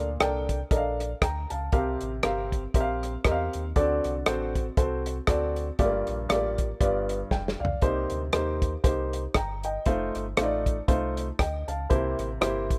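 A clear, woody upright piano sits up front in this soulful, solemn uptempo gospel excerpt, its intimate tone carrying audible action noise as it plays accompaniment from G2 up to Bb5. Moving at 118 BPM in 4/4 with a swung eighth-note feel, the harmony travels from Bbmaj7 through C7sus4 and D7 to Gm7 and G7, then on to Cm7, F7 and C7. Beneath it, a deep sine sub bass doubled at the octave holds a full, mellow, sustained low end between F1 and E2, each note arriving with a fast attack. A dry, dark soul drum kit enters at 0.2 seconds with hi-hat, tight kick, medium-tuned snare, rim click and toms, its rolled-off top keeping it smooth while it stays close in the mix, and a short fill runs from 7.3 to 7.8 seconds. The whole passage has the rough, roomy feel of a home demo caught in a studio space, cut from a longer piece.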